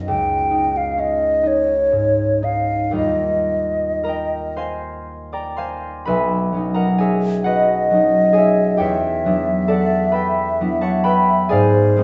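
Dreamy and luminous, this fragment of an impressionist classical duo unfolds in a rubato 6/8 as an up-front, fingerpicked concert harp rings out lush add9 and suspended chords beneath a close-miked silver flute whose pure, hollow, mellow tone carries the melody with tongued notes and vibrato, the music turning to a new section at 6.1 s while the pair bloom in the generous reverb of a recital hall.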